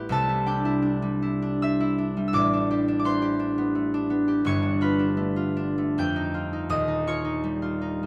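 Peaceful and graceful, this brief classical passage for solo concert harp moves in a flowing 3/4 with a rubato feel, its tempo drifting between 72 and 87 BPM. The harp is the only voice, fingerpicked and placed up front, with a bright, ringing acoustic tone that spans from Eb1 up to G6. Its harmony glides through rich extended chords, opening on Cadd9 and passing through Am11 and G9 before settling onto F9 and then Eb9 near 6.7 seconds. Close, detailed microphones capture the instrument with a light reverb that adds a gentle sense of space. Lasting about 8.1 seconds, the recording is cut from a longer piece.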